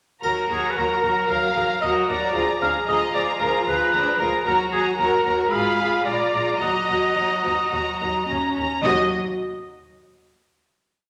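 A straight, steady four-beat pulse carries this short, complete film cue, whose playful, whimsical character leans toward the magical and the sneaky. Up front, a violin section carries the melody in smooth, vibrato-rich bowing with repeated notes and sustained chords, while a second, lush and expressive violin section doubles the tune in unison. A distant, roomy oboe in classical style joins the second line, and a close, even viola section fills the accompaniment with repeated notes, sustained chords and answers at phrase ends. Beneath them, a clear, focused cello section in the background adds a counter-melody and sustained bass, and a double bass section with light vibrato doubles the bass line in repeated notes. Dark triangle strokes sound only from 0.2 to 1.3 seconds, and the whole ensemble sits in a recital hall reverb before the cue settles on a final chord at 8.8 seconds.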